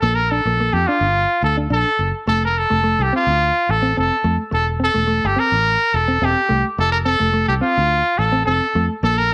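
Carefree and sunny, this short highlife guitar band excerpt in F major moves at 107 BPM in a straight 4/4 through Bb, F, C/E and F, with a clear, punchy, up-front vintage pop-style trumpet carrying the melody with scooped notes over a mellow, clean, compressed fingered electric guitar and a round, foam-muted, direct-amped fingered electric bass, all set in small room ambience with moderate spring reverb and tuned slightly low to A4 = 438 Hz.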